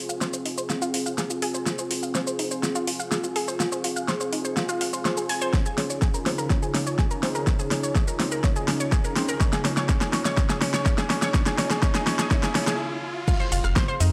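A warbling analog pluck with a bright sawtooth edge carries this cinematic, hypnotic melodic techno excerpt, spinning arpeggios through chorus and tape echo while a filter sweep opens across the build-up. The track runs at a straight 124 BPM in 4/4, in F minor tuned to A4 = 444 Hz, with chords moving from Fm to Dbadd9 and back. Beneath it, a moody, detuned analog pad holds slow-attack chords with a sub octave, and both synth parts breathe with sidechain pumping. A deep house kit with a fat snare, metallic hats, rim click, shaker and crash plays a drum fill through the build, joined by a deep, tape-warm electronic kick at 5.5 seconds, while a very quiet riser gathers behind them. After a brief stop, an impact lands at 13.3 seconds, and a round, nasal analog bass with tube saturation arrives just before the end. The gritty hardware recording sits in a lush hall reverb.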